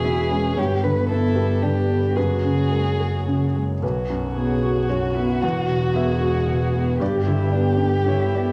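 Light reverb and a small-room ambience frame this hopeful, intimate neoclassical fragment in a rubato three-time, where a soft, felt-muted upright piano with audible action noise sits up front beside a dark, woody violin singing the melody sul tasto with vibrato, a close cello carries a second line, a rich, airy-bowed double bass holds the bass, and a very quiet, warbling tape-like pad sustains nostalgic lo-fi chords.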